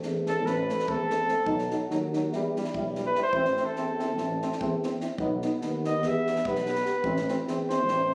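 Restless and fiery, this short Balkan brass band passage moves in a driving 9/8 with a straight feel, cut from a longer piece. A clear flugelhorn enters at 0.3 s and sits up front in a classical style, carrying the featured line high over the band. Beneath it, a present trombone and a soft-attacked, warm euphonium set in the background fill out the accompaniment, while a mellow tuba with light vibrato anchors the bass up front. A compact cocktail drum kit adds dry, acoustic kick and snare, the kick punchy and the snare tuned high. The harmony cycles through Am, B and Em before returning to Am, and the whole band sounds as if captured on a phone in a recital hall, with a moderate reverb giving the brass a roomy, lively glow.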